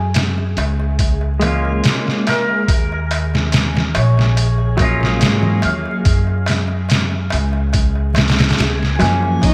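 A compressed, pitched-down sampler-style drum kit sits up front in this melancholic, dark trip hop excerpt at 71 BPM in 4/4. Its thumpy kick, medium-tuned snare and hi-hat carry a gritty character and gated reverb, joined from 0.1 s by a crisp, small metal-shell darbuka heard in a live room. A woody pizzicato upright bass on steel strings holds the low end beside the drums, while a hammered santur rings and shimmers through the melody with tape echo. From 1.4 s a bright, picked semi-hollow electric guitar adds clean accompaniment, colored by harmonic tremolo, 12-bit sampler grit, tape echo and a low-pass filter sweep. The harmony moves from Gbmaj9 to Ebm9 and back to Gbmaj9. A reversed, dreamy granular texture swells softly in the background, and a smooth bowed violin section with vibrato enters only at 9.4 s, all within a bright 1980s-style digital production touched by light reverb and vinyl crackle.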